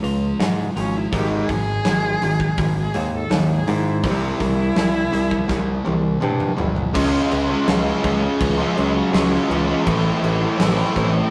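A dark, woody cello carries the melody with vibrato, entering at 0.8 s and taking a solo through the first section over a bittersweet, anthemic stretch of quiet-loud alternative rock at 82 BPM in a straight 4/4. Up front, a compressed fuzz guitar riffs from 1.1 s, taking over from a twangy, clean twelve-string electric guitar that opens with background arpeggios, while a thick, dark fuzz guitar riffs very quietly underneath. A growly picked electric bass sits forward in the mix, and a big acoustic rock kit with a punchy kick, medium-tuned snare, toms, hi-hat and crash cymbals drives the groove, with a drum fill leading into the second section. At 6.9 s a double-tracked high-gain guitar joins, very quiet and bright, as the chords move from C# through G#5 and C and back to C#, ending on Am. The sound is a rough rehearsal-room recording with a moderate small-room reverb, cut from a longer piece.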